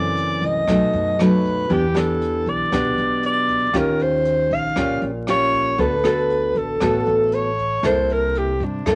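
A mellow alto saxophone plays a romantic, sunny bossa nova melody up front at 117 BPM, with light vibrato, scooped notes and a smooth top, over a full-bodied, fingerpicked nylon-string guitar whose finger squeaks can be heard. A woody, thumpy pizzicato upright bass sits beneath the guitar, and from 0.2 seconds a small-room brush drum kit with a boomy kick, hi-hat and rim click plays in the background as the chords move from F#m7b5 through Em7 and Eb9 to D6 and C13. Light reverb and vinyl crackle give this short cut from a longer piece a soft, dulled-top sound.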